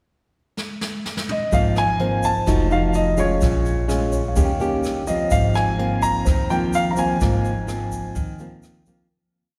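Bossa nova with a breezy, romantic mood, this short complete piece opens with a pickup bar in which a brushed jazz drum kit plays a fill from 0.6 seconds, its boomy kick and medium-tuned snare setting up a soft groove. A grand piano with long sustain enters at 1.3 seconds to carry the melody in hook-like motifs. At 1.5 seconds the band settles in: an up-front nylon-string guitar plays classical-style thumb bass and syncopated plucked chords, while a woody, dark upright bass plays pizzicato in a two-feel of roots and fifths, and a tube shaker adds a grainy, vintage texture low in the mix. From 2.0 seconds a clean tine electric piano, played through a combo amp, sits in the background with scattered notes. The chords move from Ab69 through F7b9, Bbm7 and Eb7 back to Ab69, all bathed in a lush church reverb before a fade-out begins at 7.2 seconds.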